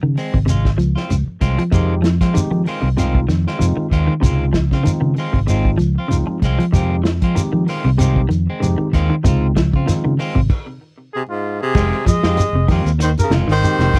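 Intense and defiant, this afrobeat excerpt moves at 96 BPM in F minor with a swung sixteenth feel, as a round, up-front fingered bass and dark, clean arpeggios from a semi-hollow guitar with tape echo open over Dbmaj7 and Fm7, joined at 0.2 seconds by muffled vintage drums, a grainy shekere and slightly broken-up guitar stabs. A barky, gritty tine electric piano adds accompaniment from 1.7 seconds, and during a stop, a distant trumpet with vibrato takes the melody at 11.1 seconds, joined by an edgy tenor saxophone on a lower second line. The sound is dry and close, a 1970s-style studio recording with little reverb.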